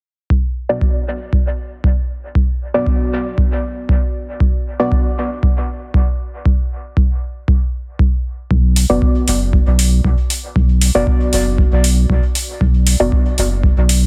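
A straight 4/4 dub techno pulse at 117 BPM in B minor opens with an overdriven, deep analog kick up front, joined at 0.7 s by a dark, nasal chord stab carrying chorus, phaser, sidechain pumping and dub echo over a single Bm chord, before a round, soft sub bass with its own sidechain pumping arrives at 8.5 s and metallic, overdriven hi-hats follow at 8.8 s, all in a dry, heavily compressed radio-like sound that feels hypnotic and nocturnal in this short cut from a longer piece.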